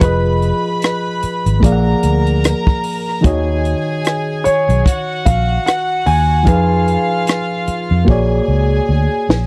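A grand piano with long sustain carries the melody over a bowed chamber violin section, a reedy, slightly out-of-tune electric piano with light overdrive and spring reverb, a dark, round, foam-muted fingered bass and a compact cocktail kit with a high-tuned snare and punchy kick, in this cinematic, bittersweet slice of lush 1970s-style soul with a swung feel. The harmony moves through Fm7b5, Bb7b13 and Ebm7 before returning, while the earthy, smooth-topped violins play a second line. The piano melody ends at 8.4 s as a drum fill from 8.1 s runs over the closing Bb7alt, all captured in a dry, close studio sound with a faint mains hum.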